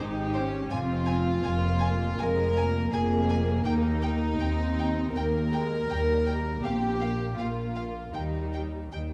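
This cinematic, emotional film score for string orchestra moves at 81 BPM in 4/4 with a rubato feel, and its mood is uplifting and hopeful despite the dark, warm production. The violins carry the melody between C5 and Ab5 with a floating, pure, sul tasto tone and soft attack, while a second violin line sits up front between Eb4 and Bb4. Beneath them the viola section supplies accompaniment with a woody, lush, vibrato-rich colour, and cellos and double basses share the bass, reaching down to F1 with a soft, bowed weight. The harmony moves from Fm through Eb, with a Bb5 arriving near 6.6 seconds before settling back on Eb at 8.1 seconds. A moderate scoring-stage reverb gives the ensemble a sense of space in this short section cut from a longer piece, which runs about 9 seconds.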